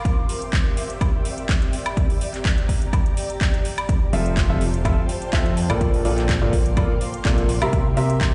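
A punchy, overdriven electronic kick sits up front in this joyful, uplifting piano house excerpt, joined by a house kit of handclaps, metallic hi-hats and woodblock, all beneath an ethereal, warbling pad with chorus and its own reverb, pumping against the beat. At 4.1 seconds a clear baby grand piano riff with short sustain and tape echo arrives alongside a fat, nasal analog bass with a saturated filter pluck, both pumping too, as the chords move from C7 through Fmaj7 and Bbmaj7 back to C7. The mix sounds as if played through a big sound system in a bare room, with large studio reverb and a dulled top end.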